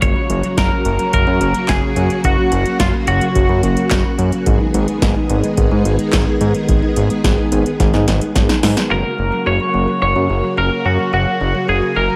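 A dreamy, reverb-soaked mix opens this upbeat, nostalgic synth-pop excerpt at 108 BPM in F# major, moving from F# to G#m and back. Up front, a bright, twangy twelve-string electric guitar carries the melody through lush chorus and diffuse ambient delay, dropping out at 4.1 seconds and returning at 8.9. Around it, a fat, detuned sawtooth bass with a filter sweep sits alongside a shimmering vintage string machine holding violin chords, while a woody, hollow kalimba plucks arpeggios in the background, and an overdriven analog drum machine with deep kick, punchy snare, metallic hats and handclaps drives the first part before a fill carries it to its stop at 8.9 seconds.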